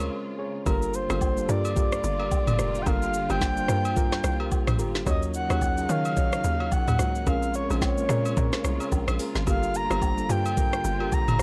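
Amapiano at 109 BPM in 4/4 with a swung sixteenth feel, this deep, late-night excerpt from a longer piece opens on a brief break before the drop lands at 0.7 s, moving through minor seventh chords from Bbm7 to Gm7, Ebm7 and back. A tape-warm, smooth R&B drum kit sits up front with a knocking kick, woody snare, warm hats, rim click, shaker and toms, while a hollow, bouncy log drum bass with a fast, decaying attack carries the low end. A mellow, clean tine electric piano plays the accompaniment alongside a deep, dark chord stab with a filter sweep and chorus. In the background, a lush bowed string section holds expressive sustained chords with vibrato and portamento, pumping under sidechain, and agogo bells and woodblock add acoustic colour with maracas and a group handclap. From 0.7 s a breathy, flute-like synth lead takes the melody up front, soft and sustained, dressed in chorus, tremolo and tape echo. 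The whole has a dry, gritty hardware character set in a digital ambience.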